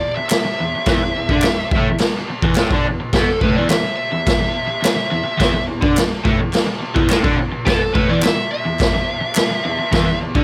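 A dark, compressed fuzz lead guitar takes the spotlight from the opening moment, playing a picked solo melody between A4 and E5 that sits up front through this gritty, swaggering garage rock excerpt. Beneath it, a bright, double-tracked crunchy overdriven guitar drives a picked riff spanning E2 to D4 at a straight 106 BPM in 4/4. A raw garage drum kit with a boomy kick, medium-tuned snare and crash cymbal joins at 0.3 s, sounding saturated and mid-forward in a small room with a rolled-off top. Group handclaps enter at the same moment, crisp and human, sitting lower in the mix before dropping out at 9.5 s. Light reverb frames the band, and the fuzz solo carries on until 10.2 s, just before the drums and rhythm guitar close this fragment of a longer piece.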